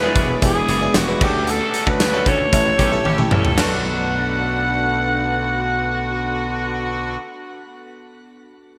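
1980s-style pop in B minor at 114 BPM, dramatic and moody, where a raspy, growling alto saxophone carries the melody up front through shimmer reverb and delay over glassy FM electric piano, a brassy sawtooth pad in the background, a twangy, slightly broken-up electric guitar riff, punchy slap bass and a big rock drum kit that plays from 0.2 to 3.7 seconds and ends with a fill, while a clear horn section adds distant stabs from 2.8 seconds, all in a lush hall and bright digital production, cut from a longer piece.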